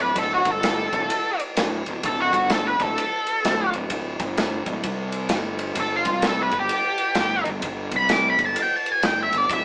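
A swung 4/4 groove drives this swaggering blues-rock and southern-rock fragment, cut from a longer piece, with the feel of a power trio playing live together in a stone room. An up-front, dark octave-fuzz lead guitar solos from the very start, its distorted tone colored by wah as it ranges high over the band. Beneath it, a growly fingered electric bass with overdrive holds down the low end, while a big acoustic rock kit enters at 0.2 seconds with a punchy kick, a medium-tuned snare and ride cymbal. The harmony rests on a D power chord before falling away to open, chordless space at 5.8 seconds, as bass and drums keep driving beneath the solo. A gritty, overdriven tonewheel organ with slow rotary swirl and key click is barely audible at the very end, and the whole mix has a moderate stony reverb and a small-speaker character.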